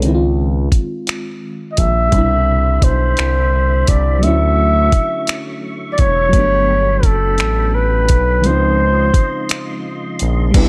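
Slow six-eight R&B with a sensual, warm mood, this brief excerpt opens on a dusty, sampler-style drum kit with a thumpy kick, finger snaps, hi-hat and crash, sitting up front beside a smooth, nasal synth bass that carries a touch of vibrato. A dark FM electric piano with tremolo fills in the accompaniment underneath, its notes striking quickly and then decaying. At 1.7 seconds a breathy flugelhorn takes the solo melody in a jazz style, with scooped notes and light vibrato, and it stays in the foreground until 9.9 seconds. A clean tonewheel organ joins at 2.1 seconds with quiet sustained chords, colored by key click, chorus vibrato and a slow rotary speaker. The lush major-ninth harmony moves from Dbmaj9 through Cmaj9, Dmaj9 and Gmaj9 before returning to Dbmaj9. A break arrives near the end, and a distant, punchy horn section with octave doubling lands brief stabs in the background just as the passage is cut off, all wrapped in light reverb.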